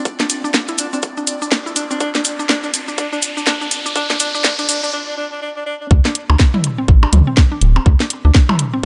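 Minimal techno at 123 BPM in D minor, clinical and sparse, this excerpt builds over a Dm7 chord with a tight, up-front electronic kick, a garage kit of cracking snare and warm hats, a grainy cabasa in the background, a woody, round mallet-like pluck riff with chorus, delay and sidechain pumping, a very quiet warbling tape-like pad, and a faint, bright, pulsing gated texture, while a breathy, intimate alto saxophone with delay holds a low D and an electronic riser climbs toward a break at 4.9 seconds. Filter sweeps shape both the pluck and the saxophone through the build. At 5.9 seconds the drop arrives as a rubbery, hollow square bass pumps up front and electronic percussion blips and toms from a larger room join the kick and kit under light reverb.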